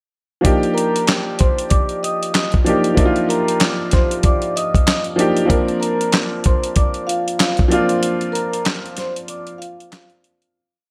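Soulful and warm, this short boom-bap hip-hop piece rides a laid-back, swung groove in four. A dusty, sampler-style drum kit sits up front with a thumpy kick, a fat snare layered with handclaps, and sixteenth-note hi-hats, all compressed and gritty. An upright piano with a cassette-tape character carries the accompaniment, its woody, slightly detuned rootless chords pushing the rhythm with grace notes and long sustain, repeated like a sampled loop from Ebmaj7 to Bb. Above it, a vibraphone played with soft mallets enters at 0.7 seconds with a short looping melody doubled in octaves, its metallic, ringing tone colored by slow motor vibrato, digital delay and a boxy small-room quality. The bright, 1980s-style digital production adds light studio reverb, and a break from 8.0 seconds fades the track out by 10.6 seconds.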